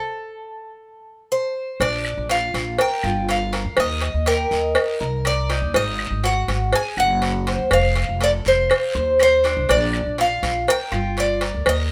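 Cuban son in a guajira vein, sunny in mood and cut from a longer piece, opens with a bright, metallic Cuban tres playing the melody up front, alone on a stop until the band enters at 1.8 seconds. From there a second, mellower tres adds arpeggios, a dark, thumpy pizzicato upright bass on gut strings holds the low end, and a tight, high-tuned cowbell joins a raspy, saturated guiro, with dry, woody claves arriving in the background at 2.0 seconds. The chords move from Bb through Eb, Ab7 and F7 back to Bb, in light reverb.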